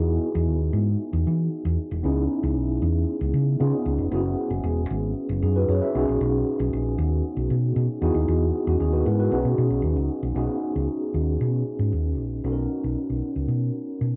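A straight 4/4 groove carries this short cut from a longer piece of polished 1980s jazz-funk pop, upbeat and urban in mood. A hollow-body short-scale electric bass, played with the fingers, sits up front with a dark, round, amped tone, running from 0.0 to 14.1 seconds in the low register. Alongside it, a mellow tine electric piano, also up front, supplies the accompaniment, its clean, warm voice heard through built-in speakers and dressed in lush chorus, cassette tape character and plate reverb. The harmony moves through extended chords such as Emaj7, C#m7 and F#7sus4, settling on Bmaj9 when a new section begins at 12.4 seconds. The whole has the character of a home recording on cassette, set in a moderate studio reverb.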